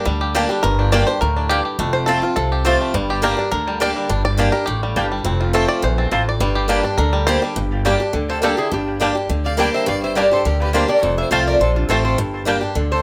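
Rustic and driving, this bluegrass cut opens with a twangy, fingerpicked banjo solo over bright, boxy picked swing guitar, thumpy gut-string upright bass and woody mandolin stabs with tape echo, before a nasal slide lap resonator guitar takes up the melody at 8.3 seconds alongside a biting bowed fiddle second line, set in a light reverb.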